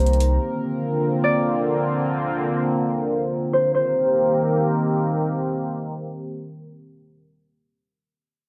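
A light reverb gives this short excerpt of hip hop a soft, open space, and it moves in free time in C minor with an ethereal, melancholic mood. A sweeping, resonant pad sits up front, full-bodied and detuned, blending sawtooth and sine tones with a sub octave, shaped by chorus and a low-pass filter. Its slow attack and filter swell give the sustained chords a mellow, evolving quality. A filter sweep runs through the opening until 3.7 seconds, as the harmony moves from Bbadd9 to Cm7. Above the pad, a thumb-plucked concert harp carries a ringing melody between C5 and D5, its acoustic tone softened by a low-pass filter and trailed by analog delay. The harp stops at 5.7 seconds, leaving the pad to hold on alone until 7.2 seconds.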